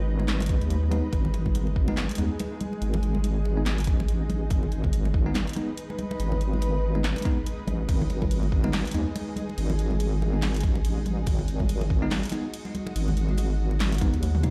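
Heard as if played back through a big sound system in a bare room with large studio reverb, this dark, meditative deep dubstep excerpt moves at 142 BPM in 4/4 with a half-time feel and a swung sixteenth-note lilt, sitting in G# phrygian over a G# minor chord. Up front, a deep, soft wobble bass in square and sine tones sounds detuned, saturated and compressed, its mellow, wobbling body thickened by chorus. Behind it, a granular cloud pad holds blurred, evolving chords with a slow attack and long release, while a bell-like tine electric piano drops bright, clean stabs that trail off into dub echo. Background congas with a thick, medium-tuned skin share that echo, and a layered electronic drum kit adds a punchy snare, handclaps, hi-hat, toms and crash cymbal over a deep electronic kick, both re-recorded in a small room. Near the end the kick drops out at 14.2 seconds, and a drum fill follows at 14.3 seconds.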